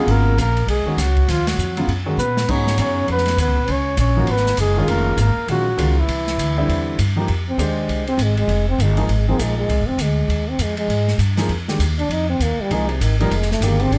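This swinging modal jazz excerpt opens with a bucket-muted trumpet carrying the melody in a dark, veiled tone with light vibrato and scooped notes, a breathy trombone beneath it on a second line, and a grand piano comping with long sustain and audible action noise, as upright bass and drums join almost at once. The mood is cool and hypnotic. A band accent lands at 1.4 seconds, and the drummer soon adds a short fill on an airy, polished kit with dark cymbals, a medium-tuned snare and a boomy kick. The pizzicato bass sits up front, its steel strings giving a woody yet bright edge. The trumpet drops out at 7.0 seconds, and from 7.3 seconds the trombone takes a present, vibrato-laden solo with scooped notes over piano, bass and drums, all in a light reverb.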